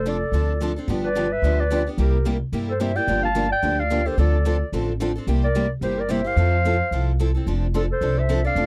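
Swinging eighths in 4/4 drive this charming fragment of acoustic string swing, where a breathy, subtoned clarinet carries the melody up front over a second mellow clarinet line, a woody, thumpy pizzicato upright bass on gut strings, and two bright picked steel-string acoustic guitars accompanying, one with audible finger squeak and the other boxy and set in the background, heard in a dry, close 1970s-style studio sound.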